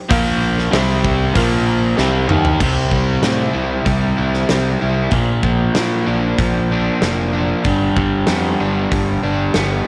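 Lightly reverberant and punchy, this sunny, swaggering classic rock piece at 95 BPM pairs an up-front overdriven semi-hollow guitar riff with a raw garage guitar riff, a growling overdriven fingered bass and a big-room acoustic drum kit with bright cymbals, while a woody upright piano sits in the background until 2.6 seconds, closing its part with a fill over a drum fill just before the next section moves through Bb and G chords.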